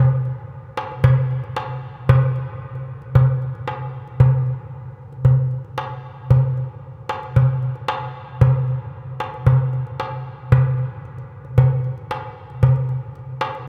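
A solo darbuka with a metal shell opens at 0.3 seconds, its crisp, acoustic strokes played with soft hands and placed up front in a cathedral reverb that hangs for 5.4 seconds. This Arabic excerpt moves at a straight 114 BPM in 4/4, its single drum building a melancholic, hypnotic pulse that echoes through a vast space. A brief closing section begins at 12.6 seconds before the drum stops at 13.6 seconds, cut from a longer piece.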